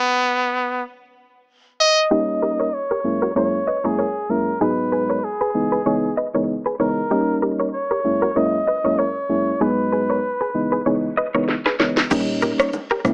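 Sultry and mellow, this short afrobeats excerpt moves at 96 BPM in 4/4 with a gentle sixteenth-note swing. A brilliant, forceful trumpet opens alone, carrying the melody with vibrato and scooped notes under a slapback echo. At 2.1 seconds, soft, round electric-piano-like synth keys with a warbling chorus arrive alongside a twangy, clean, direct-recorded electric guitar riff, while a filter sweep runs over the harmony, which cycles through D#7, F#7, G#m7 and C#m7. An electronic afro-pop drum kit with a deep kick and sharp snare breaks in with a fill at 11.5 seconds. Then, at 12.1 seconds, a thick, saturated sub bass and very quiet congas and bongos slip in just before the cut. The whole mix sits in light reverb and has a low-passed, small-speaker character.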